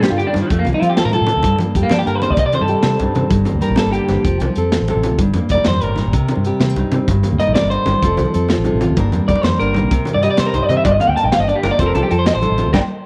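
Danceable and bittersweet, this highlife guitar band excerpt in G minor moves at 128 BPM in a straight 12/8, with a bright, twangy electric guitar up front playing arpeggios and a clean solo through a small old amp with spring reverb and tape echo, over a fingerpicked nylon-string guitar, a dark, round fingered bass entering at 0.1 seconds, a crunchy, muffled breakbeat drum kit with a punchy kick, and ringing congas in the background, cycling through F, Gm and Cm in a dry, close 1970s-style room before a band accent at 12.7 seconds.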